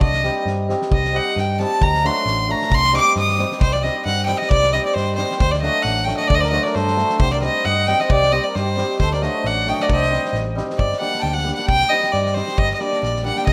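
Restless and virtuosic, this Balkan wedding-band fragment in a swung 2/4 is led by a bright, nasal solo violin with light vibrato and an airy bow, up front from the opening seconds. Shimmering hammered cimbalom, a dark, round hollow-body electric bass and a loose drum kit with a punchy kick and fat snare sitting in the background drive it along. A mellow, reedy accordion adds a second line from 6.3 to 10.4 seconds, all within a lush hall reverb and a rough home-demo mix.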